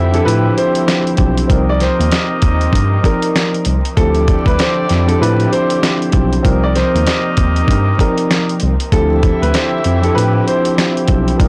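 Boom-bap hip-hop at 97 BPM with a dark, tough mood, this short excerpt rides a swung, up-front sampler-style drum kit with a thumpy kick and fat snare under a worn, slightly out-of-tune electric piano bass and electric piano accompaniment, while a woody, boxy upright piano carries the melody with audible action noise and tape echo, a distant horn section adds mellow octave-doubled stabs, and veiled con sordino strings hold soft chords in the background, all moving between Dm11 and Cm11 in a blown-out, overdriven recording laced with vinyl crackle.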